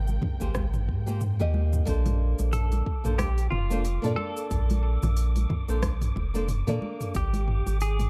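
Smooth and relaxed, this short sunset chillout excerpt opens with a dark, lush bowed string section holding sustained chords that end at 1.8 seconds, while a round, mellow sub bass sits up front beneath a layered deep house kit of smooth hats, rim click, shaker and toms, a deep electronic kick and close, damped congas in the background. A fingerpicked flamenco guitar with audible finger squeak and tape echo supplies accompaniment, and at 2.5 seconds a clean, compressed semi-hollow electric guitar takes the melody through phaser and delay. An airy, breathy wind-like noise texture drifts in the background with its own reverb, all within a dark, warm, swung production that stays quite dry overall.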